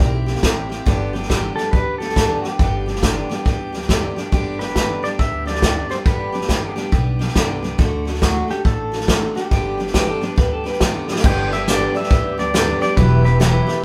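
Honky-tonk classic country with a sunny, heartfelt swing, led by a bright, twangy pedal steel guitar playing the melody over picked dreadnought acoustic guitar, a woody gut-string upright bass, a punchy, roomy drum kit played with bundle sticks that leads into a fill at 11.0 s, brief slightly broken-up electric guitar lines in the background, and a soft, flute-like tonewheel organ with slow rotary speaker entering at 11.2 s, all played live in one room.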